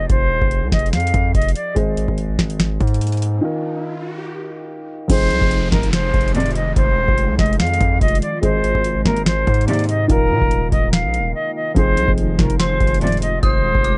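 An airy, vibrato-laced concert flute with a soft attack and touches of delay leads this wistful, dreamy half-time trap excerpt at 144 BPM, pausing for a break before returning at 5.1 seconds over a mellow, dark baby grand piano, a heavy, distorted 808-style bass, dry, booming analog drum machine with a deep kick, tonal snare, metallic hats and crash, an electronic riser and downlifter, bowed string stabs in the background, an ethereal pad with chorus and phaser from 6.1 seconds, and an eerie, inharmonic synth bell from 12.6 seconds, all moving through Fm7, Ab and Ebsus2 in a dry, warm mix.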